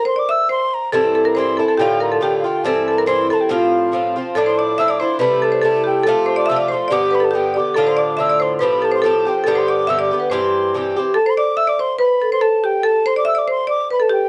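A hard-mallet marimba carries the melody up front, its padauk bars sounding woody, percussive and a little boxy, as if heard in a small room. This is a rollicking, bright stretch of Celtic folk in 2/4, cut from a longer piece, with lightly swung eighths that keep it skipping along. A wooden flute plays a second line above the marimba throughout, airy with a crisp attack and a touch of vibrato, sitting lower in the mix. An Irish bouzouki enters at 0.9 seconds with picked accompaniment, its double strings both mellow and metallic, and it holds a close, present place until it stops at 11.2 seconds. The harmony moves through chords such as Dmadd9, Am7 and Fadd9 before a repeated passage closes with the marimba and flute alone from 11.2 seconds, all under a light reverb.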